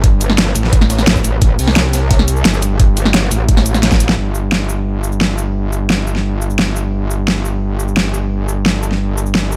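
Dark and futuristic, this excerpt of technical drum and bass at 174 BPM opens on a drop where an overdriven, knocking electronic kick and a gritty, rolled-off breakbeat kit in the background (its hats, snare and room high-pass filtered) support an up-front dubstep kit with cabasa, hi-hat and a huge snare, plus a metallic, aggressive FM wobble bass soaked in distortion, chorus and sidechain pumping, until a drum fill at 3.8 seconds leads the kick and breakbeat kit to stop around 4.0 seconds, leaving the bass and dubstep kit to carry on in a small room.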